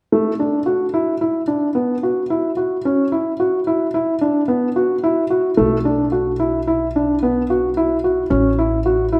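Contemporary instrumental chamber music in an uneven 5/4 at 110 BPM, this restless, pensive fragment in B minor sets a felt-muted upright piano's soft, intimate arpeggios, boxy and up front with audible action noise, over chords moving from Bm7 through a rootless Bsus4 and Bm to A, before a woody pizzicato upright bass with steel strings enters quietly at 5.6 s, all within a wet recital hall reverb.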